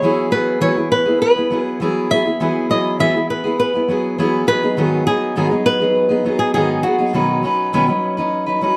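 Pop in a sunny, carefree mood, this short excerpt pairs a bright flamenco guitar carrying the melody with a full-bodied jumbo steel-string acoustic guitar fingerpicking the accompaniment, both sitting up front with slapback echo and audible finger squeak. The harmony moves from Eadd9 to G#m7 and then Badd9, while light reverb, an outdoor recording and some lossy compression artefacts shape the sound.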